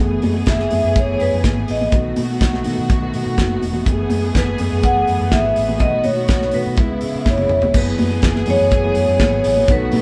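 A ringing vibraphone carries the melody from 0.5 seconds over a glamorous, danceable disco groove at 124 BPM in F# dorian, where a mellow tine electric piano and a rich, bowed string section hold the chords, a round, foam-muted fingered bass and a dry, up-front 70s drum kit with a fat snare drive the beat alongside very quiet, high-tuned congas, and a drum fill at 7.3 seconds leads into a new section back on F#m11, all heard in a moderate stone room as a band playing live.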